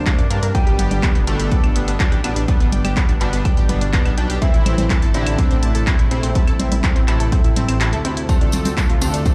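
Melodic techno at 124 BPM in a straight 4/4, dark and cinematic, this short cut from a longer piece moves through Bbadd9, G, Am and Dm7. A punchy, layered electronic kick sits up front with studio reverb, joined by a dry analog drum machine playing claves, congas, handclaps and hi-hat, its hats and percussion pumping against the kick. Underneath, a deep, rumbling detuned saw bass beats and pumps in the low register, while an edgy sync-sweep polysynth fires bright stabs with a nasal sweep, cassette-tape colour, chorus and dub echo. A round, evolving analog pluck spins arpeggios up to A6 through a filter sweep and dub echo, and from 0.5 seconds a smooth, airy supersaw carries the melody in the background alongside an eerie, inharmonic FM bell as a second line. After a brief break at 7.8 seconds, a jingly, close tambourine arrives at 8.3 seconds as the harmony lands on Dm7, all heard as if played on a big sound system in a bare room.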